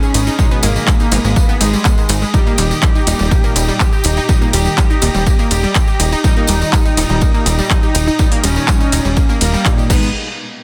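Dramatic and cinematic, this melodic techno drop at 123 BPM moves between G#m and D# chords: a fat, wave-folded analog synth brass carries the melody over round, detuned analog pluck arpeggios and bright synth brass stabs, while a lush unison pad with phaser and 12-bit sampler grit sustains chords in the background, with chorus, digital delay and sidechain pumping on the brass, pluck and stabs, chorus and pumping on the pad, a jingly tambourine shimmering behind, a funky sawtooth plucky analog bass pumping up front from 0.1 s, a techno drum kit of metallic hi-hats, handclaps, crash and ride joining at 0.1 s, and a punchy electronic kick landing up front at 0.4 s, all in light reverb within a dense, heavily limited modern master.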